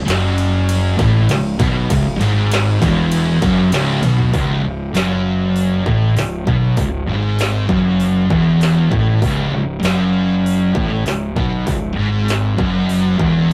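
A dark, distorted fuzz guitar sits up front with a heavy, sludgy low riff, joined in the background by a second thick fuzz guitar, in this stoner and doom metal clip cut from a longer piece. A growly, punchy fingered bass with overdrive and tube saturation runs beneath, while a double-tracked, biting overdriven guitar adds its riff only until 4.3 seconds. An electronic, distorted industrial drum kit with a clanging snare and crisp hats plays a fill from 4.0 seconds into the second section, all captured in a rough rehearsal-room recording with moderate small-room reverb.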